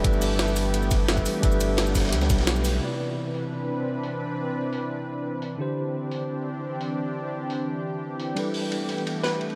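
A dark, warm production bathed in a huge ambient reverb opens this dreamy, lush stretch of liquid drum and bass, cut from a longer piece and moving at 173 BPM in G major, tuned slightly low to A4 = 436 Hz. It begins on a drop, where a deep, round sine sub bass anchors the low end until about 2.8 seconds and a knocking, layered electronic kick drops out a little earlier at 2.4 seconds, with a band accent landing at 2.5 seconds. A gritty, pitched-up jungle sampler-style kit with a high-tuned snare, hi-hat, ride and shaker carries the groove through to 9.0 seconds, joined at the start and again from 8.4 seconds by a saturated, smooth breakbeat kit with dark cymbals and a rolled-off top. Throughout, a clean tine electric piano with digital delay plays alongside a thick, detuned sawtooth pad with chorus that sits up front, the two moving from G69 through Cmaj9 and D9sus4 before returning to G69. 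Near the close, a hollow, bouncy square-wave pluck flickers very quietly on a single B4.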